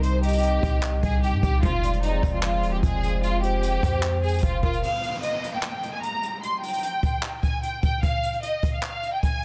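Hard-hitting yet melancholic, this short trap-leaning hip hop fragment moves in a half-time feel. An expressive, lush violin section carries the melody throughout, bowed with vibrato and placed up front, shaded by a low-pass filter and tape echo. Beneath it a dark, detuned analog pad holds sustained chords with chorus, a deep, boomy 808-style bass with a fast attack and mellow decay anchors the low end, and a hollow, woody clarinet-like synth lead adds a gentle second line in the background with chorus and tape echo. A jazz brush drum kit of kick, hi-hat and handclaps has a roomy, distant character and a rolled-off top, with a touch of clipping on its snare, while a rich string section lands a brief, smooth stab at 1.6 seconds. At 4.8 seconds the pad, bass and lead stop, leaving violins and drums as an electronic downlifter enters, all within a dry, dense and heavily limited mix.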